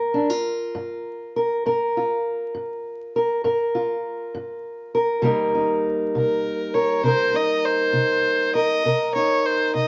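Acoustic country blues in a soulful, smoky 12/8, where a woody, old-stringed parlour steel-string guitar fingerpicks up front over Gm7 and Cm7 before a nasal, boxy bowed fiddle with light vibrato enters at 6.2 seconds to carry the melody, all wrapped in a dark production with light reverb and vinyl crackle in this short fragment of a longer piece.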